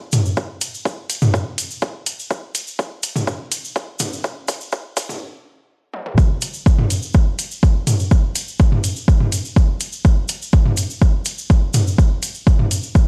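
A dry, gritty hardware recording with a high-pass filter and little reverb frames this cinematic, melancholic techno cut at 124 BPM, taken from a longer piece. An overdriven deep house kit with metallic hats and toms sits up front with sidechain pumping, while a grainy, bright tube shaker sounds distant in a large room, and a deep, overdriven electronic kick enters at 0.4 s. A build-up carries a drum fill before a stop at 5.2 s, and the drop lands at 6.2 s.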